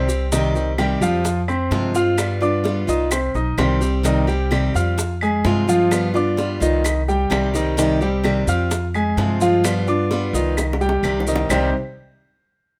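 A boxy, picked parlour acoustic guitar, an intimate grand piano with audible action noise rolling out arpeggios, and a growly pizzicato upright bass open this danceable, nostalgic Cuban son and guajira excerpt at 129 BPM in C harmonic minor, cycling through Cm, Fm and G7 up front in a close, dry sound, while tight high-tuned bongos sit in the background and grainy maracas sound close and dry, woody, distant claves join at 0.8 seconds, and a drum fill arrives at 10.6 seconds.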